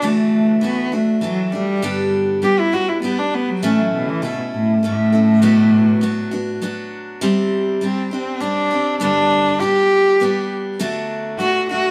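A rich, nasal bowed cello with vibrato sings the melody up front, featured as a solo through the first 7.2 seconds, over a bright, fresh-stringed picked steel-string acoustic guitar in this warm, gentle acoustic folk piece at 100 BPM in 3/4, the cello touched with plate reverb inside a modest small room as the chords move from Dadd9 through G, A and Bm to Csus2, G and D in a fragment cut from a longer work.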